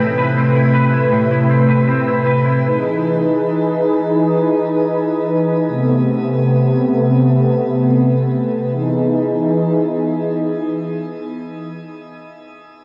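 Cassette tape softens this dream pop recording, and a wet recital hall reverb with a decay of 1.5 seconds surrounds it. In E major at a slow 79 BPM in straight 4/4, the mood is dreamy and floating, cut from a longer piece. A detuned sawtooth pad sits up front, holding smooth, mellow chords with a soft attack and a long release, colored by chorus, a low-pass filter and shimmer reverb. A clean, twangy electric guitar plays picked, compressed arpeggios at a lower level, treated with ensemble chorus, a low-pass filter, analog delay and shimmer reverb, before falling away at 3.2 seconds so the pad carries on alone. A filter sweep runs through the whole passage as the harmony moves between Amadd9 and Emaj7.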